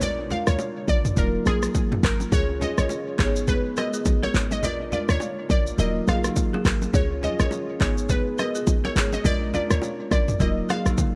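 Swung sixteenths at 104 BPM drive this smooth, sultry afrobeats excerpt in Eb minor, where an up-front deep house drum kit with a deep kick and a punchy, tight 808-style bass anchor a glassy, detuned wavetable pluck melody, a bell-like tine electric piano, a very quiet, cloudy granular pad, close and dry congas and bongos, and a woody balafon riff that enters at 2.3 seconds, all set in an echo-heavy mix with a drum fill at 11.0 seconds.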